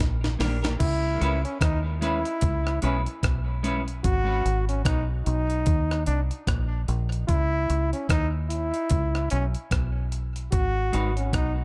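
A bright, punchy trombone with tape echo carries the second line from 0.8 seconds over a dark, round fingered bass and a gritty, compressed breakbeat drum kit that opens with a fill, while a hollow-bodied electric guitar and a soft tonewheel organ with slow rotary add brief touches to this spacious, hypnotic 74 BPM dub reggae excerpt with little reverb.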